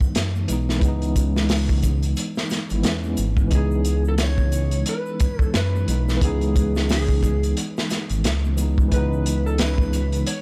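This is a dark, melancholic trip hop groove in 4/4 with a swung sixteenth feel, cut from a longer piece and resting on a single minor seventh chord. A crunchy breakbeat kit sits up front, with a tight kick, medium-tuned snare and hi-hat, its saturated, gritty sound rolled off at the top. Alongside it, a deep, rumbling detuned saw bass enters at 0.2 seconds, also up front, its unison voices beating against each other with a fast attack and sustained, shadowy tone. A tine electric piano plays accompaniment through a combo amp, clean yet roughened by vintage 12-bit sampler grit, with medium tremolo and tape echo. An electric slide guitar joins at 3.5 seconds to carry the melody, slightly broken-up and played with fingerpicks, its lines trailing tape echo, while egg shaker, triangle and group handclap sit quietly in the background of a dry hardware recording with transformer saturation.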